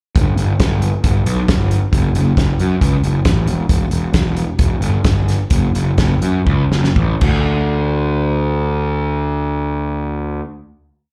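A growly, overdriven fuzz bass drives eighth notes up front through this wistful yet upbeat indie rock piece at 115-136 BPM in 4/4, alongside a loose acoustic kit with a fat snare, tight kick and rolled-off top playing an indie four groove, slowing from 3.7 seconds into a drum fill that ends the kit at 7.3 seconds, while the bass carries the final hit on to 10.4 seconds, all heard as a live gig through the club PA.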